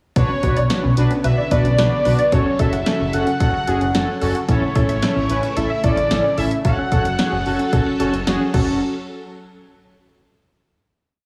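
A short synth-pop piece, nocturnal and cool, begins at 0.2 s with every part at once. A punchy analog drum machine with tape-warm kick, snare, hi-hat and crash sits up front beside a smooth, gliding sawtooth bass with portamento and vibrato, while bold, brassy analog synth brass plays triad chords in eighths. Behind them a swirling, vintage string machine holds sustained chords through ensemble chorus and phaser, and a round, detuned pluck runs rising and falling sixteenth-note arpeggios with chorus and analog delay. A fat, nasal lead with ring modulation and analog delay states call-like motifs until 8.2 s, and the heavily compressed, radio-like mix, set in a lush hall ambience, closes on a final hit from 8.8 s.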